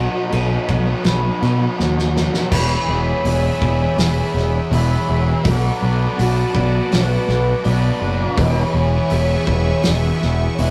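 A loose indie drum kit with a fat snare, tight kick and dark cymbals enters at 0.3 seconds and plays a fill from 1.8 to 2.5 seconds in a straight 82 BPM 4/4, driving a hazy, wistful shoegaze and dream pop rock passage in E major where a growling, up-front overdriven bass sits beneath a thick fuzz guitar riff, a scooped overdriven guitar riff and slightly broken-up, compressed arpeggios from a guitar through a small old amp, while a round, horn-like synth lead with chorus and vibrato carries a mellow melody over a swirling, detuned phased pad, all caught in a rough rehearsal-room recording with tube saturation and a short, wet small-room reverb.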